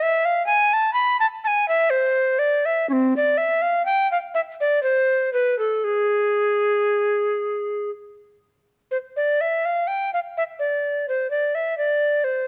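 A classical, baroque-style fantasia for unaccompanied tenor recorder, grave and flowing, unfolding in a rubato triple metre across a brief 12.5-second extract cut from a longer piece. The solo recorder ranges from C4 to B5 with an airy, woody straight tone, its tongued notes carrying a distinct chiff. Close, detailed microphones place the instrument up front, touched by light reverb, and the opening idea returns at 8.9 seconds.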